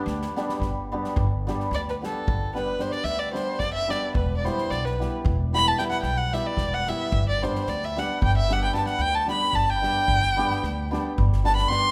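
Balkan folk in the manner of a wedding band, this excerpt from a longer piece moves in 11/8 with a virtuosic, wild energy. A dark, woody violin, bowed sul tasto with vibrato, sits up front and takes a solo from 1.2 s. Beneath it play a shimmering, ringing hammered dulcimer, a growly pizzicato upright bass on steel strings, and an acoustic drum kit played with bundle sticks, giving a fat snare and tight kick in a small-room sound. A warm trumpet with light vibrato is heard briefly in the background, ending by 0.6 s, and the ensemble rests in a moderate concert hall reverb.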